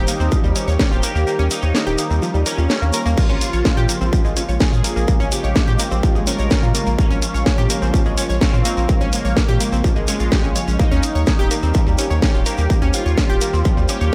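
A dramatic, cinematic melodic techno excerpt in Bb dorian at 126 BPM opens with a resonant, filter-swept polysynth melody, a lush detuned unison pad and a cloudy granular pad in the background, brilliant wave-folded analog pluck arpeggios with analog delay, and a deep, round analog bass, all pumping against the sidechain. A distorted, up-front electronic kick enters at 0.3 seconds, drops out from 1.3 to 3.2 seconds, then drives on beside a techno kit of cracking snare, hi-hats and crash cymbals and a grainy, mellow shekere. Chorus and phaser shimmer on the lead and pad, diffuse delay trails the melody, and the harmony shifts from Eb to Bbm and back to Eb.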